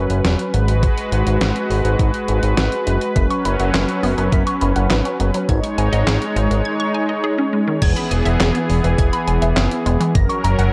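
A brassy, warbling analog pad with chorus and a fat, detuned sawtooth bass open this melancholic, nocturnal synth-pop excerpt at 103 BPM, joined almost at once by a thumpy, tape-tinged 8-bit drum machine with handclaps and crash, before a squelchy, resonant blip pluck enters at 3.2 seconds with phaser and analog delay on bright arpeggios, all within a dark production lightly touched by digital reverb as the harmony shifts to E at 7.8 seconds.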